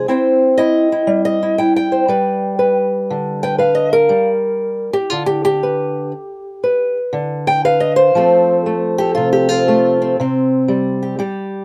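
Close, detailed microphones and a touch of light reverb put a woody, boxy old ladder-braced acoustic guitar up front, its dark tone coloured by aged strings. This rollicking, soulful acoustic country blues moves at 119 BPM in 4/4 with a swung eighth-note feel, the fingerpicked guitar playing solo in C major across a range from C3 to G5. Cut from a longer piece, the roughly 11.6-second passage moves from C to G and on to F before landing back on a C5 chord at 10.2 seconds.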